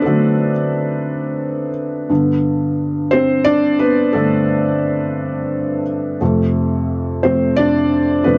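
A felt-muted upright piano opens this short pop passage and carries it alone for its full 8.4 seconds, sitting up front with a soft, intimate tone. The mood is heartfelt and tender, moving slowly at 59 beats per minute in 6/8 with a straight feel. The piano spans from F2 up to D5, and its harmony moves from D to G at 2.1 seconds and then to F at 6.2 seconds. A light reverb gives the mellow, muted sound a little air. The production is dark and warm overall, with the highest frequencies gently rolled away.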